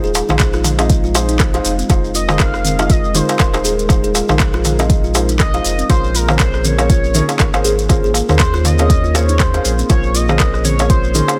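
A 16th-note swing of 57% at 120 BPM in 4/4 drives this hypnotic, spiritual afro house excerpt in F minor. The groove rests on a deep, up-front electronic kick, an afro-pop drum kit of handclaps, smooth hi-hats, rim clicks and toms, a crisp, dry metal-shell darbuka played with soft hands, and a grainy shekere sitting in the background. Beneath them, a round sine sub bass holds the low end with sidechain pumping, while a dark, detuned analog pad sustains moody chords, moving from Fm7 to Bbm9 at 5.9 seconds. A woody, thumbnail-plucked kalimba spins short arpeggios and a felt-muted upright piano adds soft, intimate stabs with audible action noise, both trailed by digital delay. At 2.2 seconds an expressive synth lead enters, its nasal sawtooth-and-triangle tone carrying vibrato, subtle chorus, a cassette-tape colour and delay, all set in a small room ambience.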